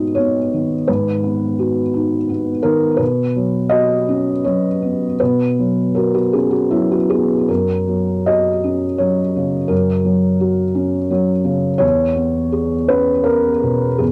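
A felt-muted upright piano plays alone from 0.0 to 14.1 seconds in this intimate, melancholic excerpt of neoclassical minimalist piano, its soft, dark, thick-felt tone sitting up front in moderate booth ambience on a cassette home recording as the rubato 3/4 pulse drifts between 75 and 87 BPM through G#m7, Bsus2, F# and C#m7/E.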